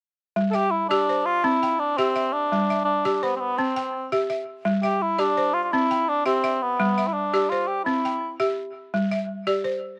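A mellow cor anglais carries a close-miked solo melody in classical style, its light vibrato and slapback echo sitting up front from 0.5 s until it stops at 8.3 s. Alongside it, a woody, buzzing balafon struck with hard rubber mallets plays dry, up-front arpeggios that sway between G5 and C chords in a hypnotic 12/8 West African traditional groove, also with slapback echo, and it continues alone to 10.0 s. Cut from a longer piece, it was recorded outdoors with light reverb and has a warm feel.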